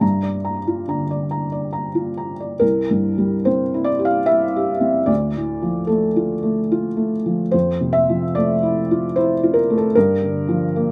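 The sound is dry and close, captured outdoors with the instrument placed up front, so the playing feels intimate and unadorned. This short cut from a longer neoclassical minimalist piano piece features a felt-muted upright piano playing alone, its tone soft, mellow and dark under thick felt. The music moves in a lilting three-beat metre with a rubato feel, giving it a reflective, wistful quality. It opens on a Gm7 chord, and at 2.6 seconds a new section begins on C7, then drifts through Dm and Fmaj7 before returning to Gm7 at 9.9 seconds. The piano ranges from low C2 up to Bb5, and its natural, muted timbre keeps the mood hushed and inward.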